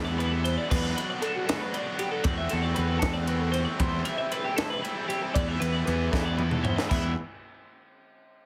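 Math rock and midwest emo in E minor at 77 BPM in 6/8, this restless, intricate excerpt has a bright, twangy twelve-string electric guitar playing chorused arpeggios over a biting, double-tracked overdriven guitar riff with spring reverb, while a dark, round fuzz bass holds a low E up front. A crisp fusion drum kit with a high-tuned snare and tight kick enters at 0.2 seconds in a small, pumping room, and a drum fill at 6.1 seconds leads the Cmaj7/E, Bm7/E and D7/E progression to an Em at 6.9 seconds. The mix is dry and heavily compressed, like a radio broadcast.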